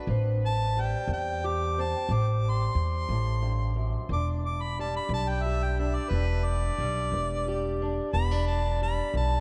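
Acoustic country blues in E minor, this brooding, mournful fragment moves at 60 BPM in a slow 12/8 with a straight feel, cut from a longer piece. A clear harmonica carries the melody as a jazz-style solo throughout, sitting up front with light vibrato and scooped notes. Beneath it, a fingerpicked acoustic archtop guitar gives a dark, boxy accompaniment, with finger squeak audible on the strings. A pizzicato upright bass with steel strings enters at 0.1 seconds, woody and up front, as the harmony moves from Am7 to Em7 at 4.1 seconds. The mix is dreamy and soaked in a moderate cathedral reverb, with the hazy character of cassette tape.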